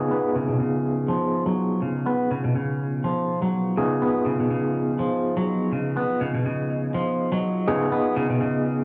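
A dry, gritty hardware recording with small room ambience and light digital reverb frames this swaggering, raw breakbeat fragment, cut from a longer piece and running about 8.8 seconds at 123 BPM in 4/4 with a slight 16th-note swing. Up front, a clean electric guitar plays a bright, twangy, scooped riff in its lower register, picked and compressed, roughened by vintage 12-bit sampler grit, a low-pass filter and analog delay. Alongside it, an overdriven tine electric piano punches out barky stabs through a combo amp, its medium tremolo, low-pass filter and analog delay colored by a filter sweep that runs the full length. In the background, a deep, moody ambient pad enters at 0.1 seconds, holding sustained sawtooth-and-sine chords with a sub octave, slow attack and long release, softened by chorus and its own reverb. The harmony opens on a C#7 chord.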